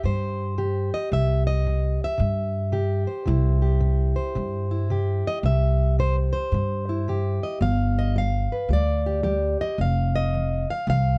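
Acoustic country blues with a gritty, swaggering mood, this short cut swings its eighths at 111 BPM in 4/4 in C major, pairing an up-front, full-bodied, fingerpicked, plugged-in jumbo steel-string acoustic guitar carrying the melody with a touch of plate reverb against a woody, growly pizzicato upright bass, both playing throughout the 11.2 seconds in a dark, lightly reverberant production that moves from C to G5 at 7.6 seconds and F5 at 9.8 seconds.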